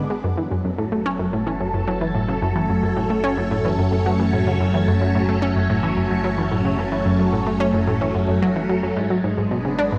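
Hypnotic and mysterious, this short cut from a longer piece of ambient, sequencer-driven space music moves at 110 BPM in a straight 4/4, centered on F# minor. A phased string machine holds sustained chords from F#3 to D5 throughout, its swirling, vintage sawtooth tone softened by a slow attack and colored with ensemble chorus and phaser. Up front, an analog pluck plays a riff between F#2 and D4, round and detuned with a fast attack and short decay, carried by chorus and analog delay. Beneath them a fat analog bass sits low around F#1 to G#1, its thick tone blending sawtooth and square waves with a moving notch. The harmony rests on F#m from 0.2 seconds before shifting to G#dim at 9.0 seconds, and the whole dreamy mix is soaked in a lush hall reverb with a 3.0-second tail.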